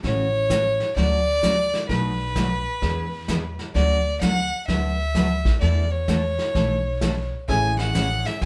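Swung eighths in 4/4 carry this playful western swing fragment, where a clear bowed fiddle with light vibrato sings the melody up front over a bright, full-bodied picked acoustic guitar with finger squeak, a woody, thumpy pizzicato upright bass on gut strings, and a vintage brush kit with a punchy kick and rolled-off top, the band captured live in one room with moderate reverb, until a slightly detuned upright piano slips in quietly behind them at 7.5 s.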